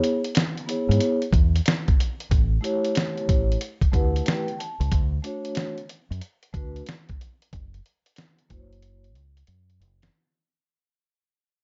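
A dark, softly reverberant production with a muted top end frames this mellow, nocturnal jazz-hop fragment, cut from a longer piece and fading out throughout. A sampler-style soul drum kit sits up front with a gritty, tape-warm, compressed character, its thumpy kick, medium-tuned snare and hi-hat carrying the roomy sound of a large space and a lazy swung feel. A deep, fingered electric bass enters at 0.9 seconds, round and punchy in the low register. Over the chords E6, A7, Dmaj7 and F#7, a soft-mallet vibraphone adds metallic, ringing tones with a slow motor vibrato, smooth and warm as it sits up front in the mix, and plays a brief fill at 3.6 seconds. The drums close the passage with a fill starting at 8.8 seconds.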